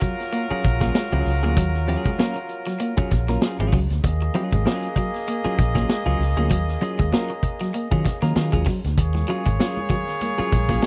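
A clear horn section playing a second line, a twangy, slightly broken-up electric guitar riff and a gritty vintage drum kit with a punchy kick and rolled-off top open this hypnotic, cool funk excerpt at 97 BPM in Eb minor, swung on the 16ths and resting on a single Ebm11 chord. At 0.5 seconds a dark, round, foam-muted fingered bass with tube saturation arrives up front alongside a clean, compressed electric guitar accompaniment with spring reverb. Bright, thin-skinned congas enter in the background at 9.0 seconds, all within a dry, close 1970s-style studio sound.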